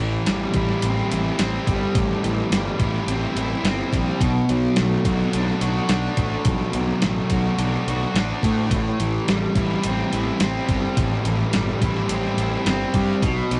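Shoegaze-tinged dream pop rock at 106 BPM in A dorian, this hazy, melancholic fragment of a longer piece moves through Am7, Bm7 and back to Am7. A bright, double-tracked fuzz guitar riff sits up front, distorted and compressed, over an overdriven fingered bass with a fuzzy, amped tone, while a detuned 8-bit drum machine joins at 0.3 s with a thumpy kick, medium-tuned snare, hi-hat and a tape-softened edge. The rough rehearsal-room sound is dulled at the top and bathed in wet studio reverb.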